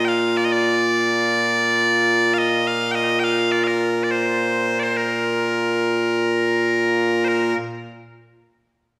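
Loud, piercing solo bagpipes carry this proud, ceremonial fragment of Scottish pipe music, cut from a longer piece and set in a straight, steady 4/4. The bright, continuous pipes sit up front and play alone until 7.6 s, with a new section arriving at 7.3 s. A wet scoring-stage reverb lends a sense of being heard from further back in the room.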